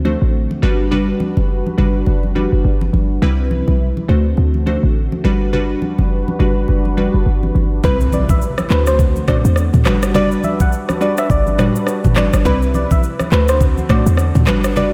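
Breezy and sunny, this afrobeats clip opens with a glassy, crystalline wavetable pluck and a smooth sawtooth pad with a moving notch over a punchy, tight 808-style bass sitting up front, while congas with a thick skin are played with hard hands in the background and the chords cycle through Gmaj7, Cmaj7 and D7. At 7.8 seconds an up-front electronic drum kit with a knocking kick, handclaps, rim click, shaker and toms arrives alongside a round, keys-like FM lead carrying chorus, vibrato and analog delay, as a very quiet impact marks the change. A light reverb surrounds the mix, and the lilting 16th-note swing keeps it easygoing.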